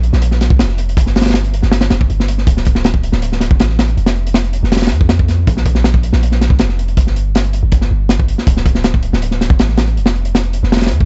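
A crunchy breakbeat drives this drum and bass and jungle excerpt at 160 BPM in a straight 4/4, with hi-hat, kick drum and snare drum running from 0.0 to 11.1 seconds. The kit sounds acoustic and up front, set in a small room, with a punchy kick, a medium-tuned snare and a saturated, gritty character softened by a rolled-off top. Beneath it, a long sustained 808-style bass holds down D minor from D1 to F2, its sine tone deep and mellow, striking with a fast attack before decaying. The mood is at once nostalgic and frenetic, with a drop at 0.0 seconds and another at 2.5 seconds. The production is dark and warm, with little reverb and nothing above 7.9 kHz, giving the whole passage a close, muted sheen.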